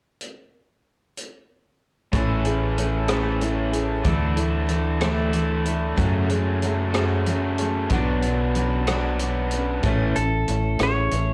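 In a slow, straight 6/8 at 62 BPM, a vintage drum kit opens at 0.2 seconds with hi-hat, rim click and a punchy kick, its sound natural with a rolled-off top. At 2.1 seconds the band joins. A full-bodied jumbo acoustic guitar is picked with audible finger squeak, a bright, overdriven, double-tracked garage guitar plays the riff up front, and a dark, round fingered bass sits low and prominent. This jangly, nostalgic folk rock and heartland rock passage in A major moves through Amaj7, Dsus2, F#madd9 and Bmadd9 before returning to Amaj7. At 10.2 seconds a clean, twangy lap steel enters with the melody, using slide and volume swells, touched by slapback echo. The whole excerpt carries light reverb and the worn, warbling pitch drift of old cassette tape, and it is cut from a longer piece.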